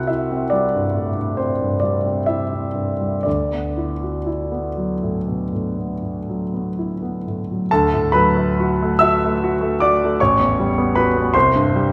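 Set in a recital hall with a wet reverb and heard from further back in the room, this serene, dreamy fragment of a longer impressionist piece features a solo concert grand piano, clear and polished, with deep bass, long sustain and audible action noise. The piano plays alone throughout, ranging from A1 to E6 in D major and moving freely in a rubato 9/8 at 39-53 BPM in dotted quarters. Its harmonies drift from Cadd9 to D69, then shift toward A13 at 10.2 seconds before settling on a bare C5 at 11.3 seconds.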